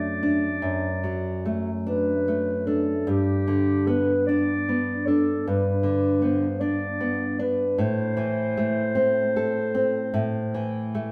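Romantic duo in a rubato 12/8, yearning and elegiac: a mellow, distant clarinet sings the melody over fresh-stringed, fingerpicked classical guitar placed up front, the two playing live together in a stone room whose reverb gives the short passage, cut from a longer piece, a resonant, roomy glow.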